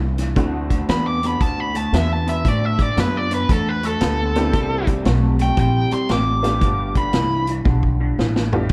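A gritty, soulful electric blues shuffle with light reverb, swinging at 115 BPM in G major, cut from a longer piece. A slightly broken-up, lo-fi guitar riff with analog chorus and a woody, thumpy pizzicato upright bass start at once, joined by a vintage drum kit with dark cymbals and a rolled-off top at 0.2 seconds and a detuned, jangly honky-tonk upright piano at 0.4 seconds, moving through D9, C9 and G9 chords. An up-front, overdriven lead guitar carries the melody from 0.9 seconds, and the drums close with a fill at 7.7 seconds.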